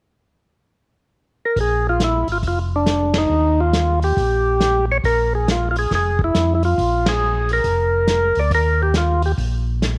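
A percussive tonewheel organ opens this bluesy soul jazz organ trio clip at 1.5 seconds, carrying the melody through a slow rotary speaker with audible key click and a second-harmonic percussion attack. A moment later, at 1.6 seconds, a second, mellow tonewheel organ arrives on the bass line, its round, dark tone shaded by chorus vibrato and its own slow rotary, while a vintage drum kit joins on hi-hat, ride, snare and a tight kick. The kit sits further back in the mix, sounding muffled and lo-fi, as if captured in a small room with dark cymbals and a rolled-off top. The groove swings in four, moving between Bb7 and Eb harmonies, with the whole band hitting accents at 3.1 and 7.0 seconds. Both organs stay clean and up front over a light studio reverb, and the swinging passage runs until the clip cuts off at 10.0 seconds.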